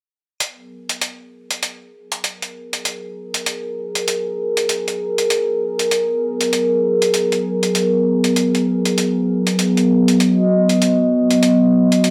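Funky and playful, this swung glitch hop clip from a longer piece sets a smooth, warbling detuned-sawtooth pad, sustaining a single ninth chord with chorus under a filter sweep throughout, against an up-front, gritty, pitched-down sampler-style hi-hat, all in a light digital ambience.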